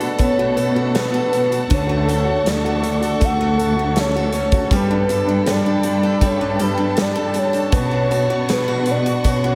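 A straight 4/4 pulse at 80 BPM comes from a huge, punchy arena drum kit with kick, medium-tuned snare and hi-hat, carrying this emotional, longing pop ballad excerpt in B minor until the drums stop at 9.4 s. A soft, round octave-layered synth lead with a sub octave, chorus and phaser sings the melody over an intimate grand piano with audible action noise, while a dark, distant bowed cello section holds the bass and a studio string section adds smooth, expressive sustained chords with vibrato and portamento. A bright picked steel-string acoustic guitar with tape echo and finger squeak sits in the background with arpeggios, as the harmony moves from Bm7 through Dmaj7 and Gadd9 to Bmadd9 in light reverb and small room ambience.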